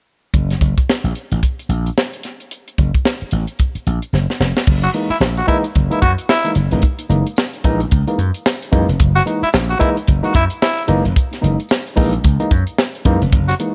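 A raspy, growling tenor saxophone takes a solo second line from 4.8 seconds in this energetic, funky 111 BPM funk excerpt in F# mixolydian, riding over a punchy, amped slap bass and a tight, dry acoustic drum kit with bright cymbals and a high-tuned snare, whose fill at 4.1 seconds carries the opening F# groove into an F#13 chord, where worn, slightly out-of-tune electric piano stabs and a jingly tambourine in the background join in.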